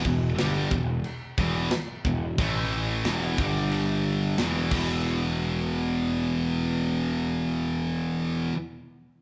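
Relentless and epic, this heavy metal excerpt moves in a straight 4/4 with two distorted electric guitars playing the riff up front in a low register, one bright and compressed, the other pushed to high gain. Beneath them a fuzz picked electric bass adds a growly, overdriven low end. A tight metal drum kit with a medium-tuned snare, tight kick, china and crash cymbals sits mid-forward with a rolled-off top, launching a fill at 4.7 seconds and dropping out at 4.9 seconds. From 5.1 seconds a second section carries on with guitars and bass alone, after the harmony has moved from E minor through A5, E5 and G5 power chords and back to E5. The band sounds as if playing live in one large studio room, with a moderate reverb tail around the whole performance.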